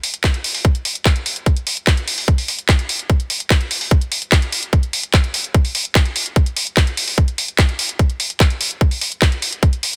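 Dense, heavily limited and nearly dry, this psychedelic, driving trance cut at 147 BPM in straight 4/4 puts a layered, up-front garage drum kit of handclaps and warm hi-hats across the full 10 seconds, joined from 0.2 s to 9.7 s by a tight electronic kick, both parts carrying the close character of a small room.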